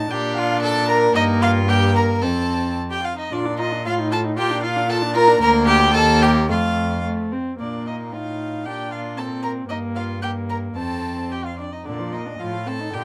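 A quick, graceful and spirited classical-period string quartet movement in Bb major, at 112 BPM in 2/4 with rubato phrasing, opens with a gut-string violin carrying the melody over a reedy viola accompaniment and a rich cello bass, joined at 0.1 seconds by a close, nasal second violin with an airy bow, every part in period style, with light vibrato on the first violin, viola and cello, as the harmony moves through Bb, Gm7, F and Eb in a light reverb.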